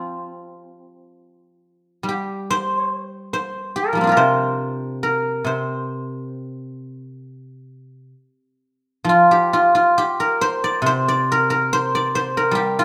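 The rhythm moves freely in a rubato four-beat metre, with uneven beats that stretch and settle at a slow, unhurried pace. This is a short cut from a longer traditional Chinese piece for solo plucked strings, serene and elegant in mood. A lone guzheng carries everything, played with fingerpicks so its acoustic tone comes through silvery and ringing, sitting up front in the mix across a span from its low register into its upper middle. A reverberant recital hall surrounds the instrument, letting each plucked note bloom and linger in the space. The opening passage runs until 9.1 seconds, when a new section begins and carries the music to its close at 12.8 seconds.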